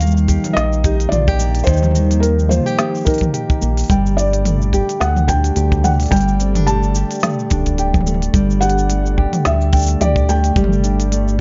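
Pastoral and playful, this folktronica excerpt moves at 108 BPM in 4/4 with a gentle 16th-note swing, drifting from Ebadd9 to Gsus2 at 3.9 seconds. A felt-muted upright piano carries the melody with a boxy, intimate tone and audible action noise, treated with tape echo and plate reverb, while a woody marimba with soft mallets adds a second line in the background and a thumb-plucked nylon-string guitar plays arpeggios, both through tape echo. A warbling, lo-fi pad sustains chords under chorus and reverb, a round, deep analog bass sits up front, and an organic electronic kit with a woody snare, smooth hats, cabasa and toms is joined by a punchy, airy kick from 0.3 seconds, all in a dark production with light reverb.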